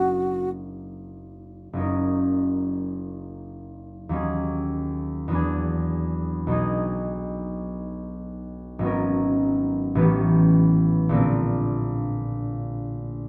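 Classical impressionist duo in a pastoral, dreamy mood, this fragment of a longer piece moves in a rubato 6/8 at 51 BPM counted in dotted quarters, in F# mixolydian tuned to A4 = 439 Hz, where a bright wooden-headed alto flute sounds a brief, airy F#4 melody note carrying vibrato and a soft attack over the first 0.5 seconds, while the ringing, thumb-plucked concert harp, playing from the very start, then carries on alone until 13.3 seconds, spanning F#1 to A#4 through chords such as F#6, D#m7, E9, G#m11 and A9, both instruments heard up front through close, detailed microphones with light reverb.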